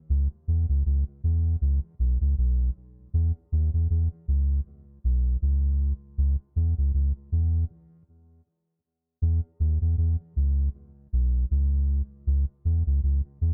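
A soft dub sub bass plays alone from 0.1 seconds, deep, round and mellow, sitting up front in a dry, spacious reggae groove at 79 BPM in 4/4 with a light sixteenth-note swing and a laid-back mood, ranging from B1 to E2 with fast attacks and sustained notes across this short 13.5-second cut from a longer piece.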